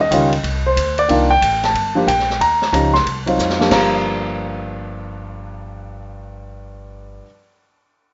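Moody, swinging jazz piano trio in G minor at 183 BPM in 4/4, with a 64% swing on the eighth notes and tuning set to A4 = 442 Hz. A dark, mellow grand piano carries the melody up front, ranging from G2 to C6, its short sustain and audible action noise giving it an intimate, close-up character. Beneath it, a pizzicato upright bass on gut strings sounds woody and thumpy in its low register. A vintage acoustic drum kit in a studio room, mid-forward with a medium-tuned snare and a rolled-off top, works crash, hi-hat, ride and snare before a drum fill from 3.4 s leads into a new section, after which the drums stop at 3.8 s. The harmony moves through Csus2, Cm11, Gm, Eb9 and Cmadd11 to Gm7, and the whole passage is a fragment cut from a longer piece, heard through light reverb in a rough home demo mix whose highs fall off above 7.7 kHz.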